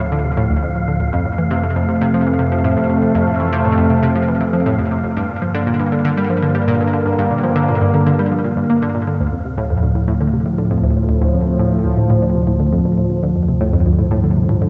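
A sweeping, resonant pad of detuned sawtooth chords sits up front with a slow attack and an evolving filter swell, sustaining over a Dm, F and Gm progression in this cosmic, hypnotic slice of sequencer-driven ambient space music cut from a longer piece. Beside it an analog pluck riff, round and fast-attacking with a short decay, blends sawtooth and square waves with a noise layer and filter sweep, coloured by chorus, cassette tape character and delay. An airy, breathy wind-like texture hovers high and dark in its own reverb until 9.2 s, where the music moves into a new section back on Dm, all set in an echo-heavy mix with a wet spring reverb.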